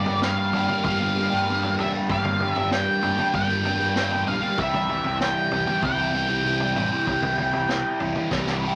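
Mysterious and trippy, this short psychedelic rock excerpt in G dorian moves at 96 BPM in a straight 4/4, with a dark octave-fuzz lead guitar carrying the melody over a double-tracked, up-front overdriven semi-hollow guitar riff colored by phaser, a growling picked bass with overdrive, and a punchy vintage drum kit with a rolled-off top that closes on a fill at 8.3 seconds, all set in a wet studio ambience as the harmony shifts from Gm7 to C.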